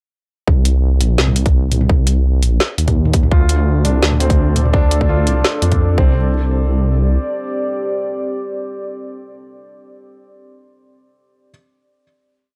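A rumbling, detuned saw bass with tube saturation anchors this tense, cinematic half-time drum and bass piece, holding long dark notes from 0.5 seconds beside a tight, up-front electronic kick and a sparse kit beat of woody snare, metallic closed hats and low toms. At 3.3 seconds a felt-muted upright piano enters with soft, intimate arpeggios from a repeating ten-step loop that drifts against the bar, its action noise audible through tape echo. A deep, moody pad with chorus, built-in reverb and sidechain pumping comes in at 4.4 seconds and sustains through the final hit after the drop, all in a dry, gritty mix where the drums sound re-recorded in a small room.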